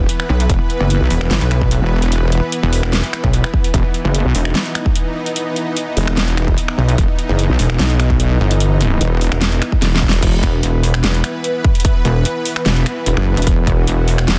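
Dry, dense and heavily limited, this aggressive, chaotic half-time wobble dubstep drop, cut from a longer piece, is driven by a saturated, up-front wobbling sawtooth bass and a pulsing, sine-based pluck wobble bass, both carrying chorus and overdrive, beneath a lush, detuned supersaw pad holding sustained chords with sidechain pumping, while a punchy electronic kick and a tape-warm dubstep kit of huge snare, metallic hi-hats, finger snaps and crash cymbal push the groove, with a drum fill at 9.8 seconds leading into a second drop at 10.2 seconds.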